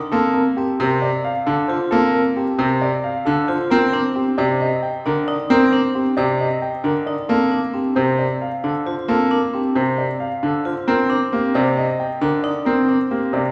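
Heard from further back in a wet scoring-stage reverb, this hypnotic, urgent stretch of minimalist classical pattern music, cut from a longer piece, sets a metallic, airy vibraphone with medium hard mallets and slow motor vibrato spinning arpeggios, an intimate, up-front grand piano with audible action noise carrying the melody, and a brilliant, polished second grand piano giving long-sustained accompaniment, all moving through Bbadd9, Cm7, a rootless Gm9 and a C7 with its third omitted.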